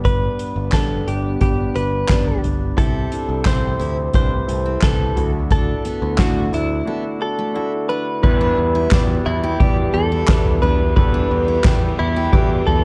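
Driving and bittersweet, this piano-driven pop fragment at 88 BPM in E minor pairs a compressed, chorus-tinged clean electric guitar melody with an intimate concert grand whose action noise is audible, a bright picked electric bass, a faint, breathy, detuned pad, and an up-front soft-mallet drum kit with a fat snare, boomy kick, dark cymbals and gritty 12-bit sampler texture, while a full-bodied acoustic guitar riff joins in the background at 2.8 s, moving through G, C6 and Dadd9 to a break at 6.9 s before settling on E minor, all under light reverb and a cassette-tape hue.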